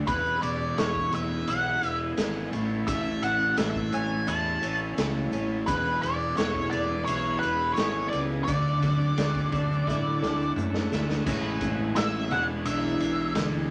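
Soaked in a wet small-room reverb, this kaleidoscopic, hypnotic psychedelic rock fragment sets a bright, twangy twelve-string electric guitar riff run through a rotary speaker against a dark, distorted octave-fuzz lead melody coloured by wah, over a round, overdriven fingered fuzz bass, a punchy, gritty garage drum kit with a rolled-off top that plays a fill at 9.9 seconds, a buzzy vintage combo organ holding chords in the background and a very quiet, grainy tube shaker, as the harmony turns to a major-seventh chord at 11.3 seconds.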